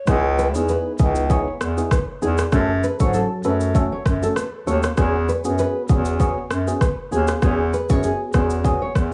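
A lightly swung afrobeats groove at 98 BPM in 4/4 rides on an electronic drum kit with a deep kick, rim click and shaker, roughened by vintage 12-bit sampler grit and set up front, in a hypnotic, mellow excerpt in C# minor cycling through C#m7, F#m and E6. A warm, roomy bass clarinet holds the low line in classical style, while a worn, slightly out-of-tune tine electric piano comps through built-in speakers. A dark, full-bodied nylon-string guitar repeats a thumb-plucked riff with audible finger squeak and tape echo, all within light small-room reverb and a low-pass filter from 0.1 to 9.1 seconds.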